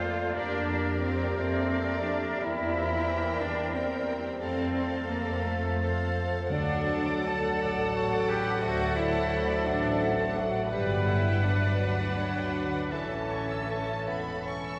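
Classical music for symphony orchestra, this slow romantic movement in 6/8 moves with a flexible, rubato pulse and an elegiac, solemn mood, cut from a longer piece. A rich, focused violin section carries the melody with vibrato, while a second violin line sits very quietly alongside it, joined by a clear, slightly vintage oboe, a very quiet, airy flute section and a warm clarinet in the background as supporting voices. The bassoon and a smooth, even viola section supply accompaniment from further back, and a dark, soft-edged French horn section holds sustained chords at a distance. The bass is anchored by a distant cello section and an expressive double bass section placed up front. At 6.5 s, as the harmony shifts, the timpani add a brief, very quiet stroke with hard mallets, dry and articulate, ending by 7.6 s. Everything sits in a long cathedral-like reverb that lends the ensemble a spacious, solemn glow.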